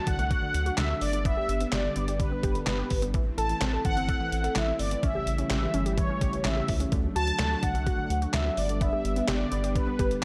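A mellow, brassy and detuned synth-brass melody with chorus, phaser and delay opens this nocturnal, driving synth-pop excerpt at 127 BPM, over vintage string-machine violas holding soft-attack sustained chords and a warbling, lo-fi pluck arpeggio with chorus and delay, joined at 0.1 seconds by a round, deep analog bass and an overdriven, detuned 8-bit drum machine up front with thumpy kick, fat snare, handclaps and hi-hat in a large room, as the harmony moves through D, G, Am and A7 under light digital reverb.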